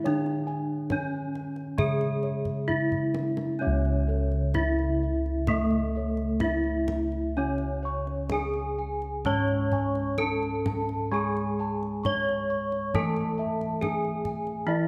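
Javanese gamelan at 66 BPM in C# pelog, hypnotic and shimmering with uneven beats, where an up-front bronze metallophone carries the bright, horn-mallet melody over a second ringing metallophone accompaniment, dark, round bossed gongs supply both arpeggios and bass, a deep kendang adds percussion with a drum fill from 2.5 to 3.6 seconds, and a mellow, padded-mallet metallophone joins the arpeggios at 3.6 seconds, all within a moderate concert hall reverb in this cut from a longer piece.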